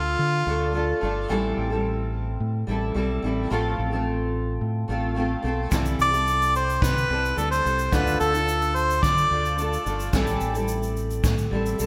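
A carefree, sunny acoustic pop excerpt at 109 BPM opens with an up-front, double-tracked fingerpicked steel-string acoustic guitar with audible finger squeak, over a round, dark fingered electric bass, while a smooth-topped harmonica with delay sounds a brief phrase. At 5.7 seconds a boomy, distant brushed kick drum with gated reverb and a grainy tube shaker in the background join, and the harmonica returns at 6.0 seconds to carry the melody over a Dm, Am7, F/A and C6 progression. The bright 1980s-style digital production sets the parts in a lush hall reverb with small room ambience.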